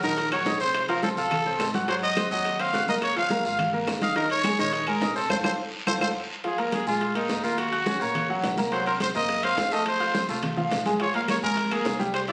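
A straight 4/4 salsa pulse at 211 BPM in Bb minor drives this fiery, danceable excerpt, with congas, bongos, guiro and ringing timbales in the background, while very quiet, woody claves drop out at 6.1 s and return at 11.3 s. Up front, a growling trumpet carries the melody with a gritty edge, light vibrato and plate reverb, beside a brilliant, worn concert grand piano with deep bass, as a dark, thumpy pizzicato upright bass sits beneath. A band accent from 5.3 s and a drum fill at 5.6 s lead from the opening section into the second, and the whole take carries a moderate studio reverb and the sound of a phone recording in the room.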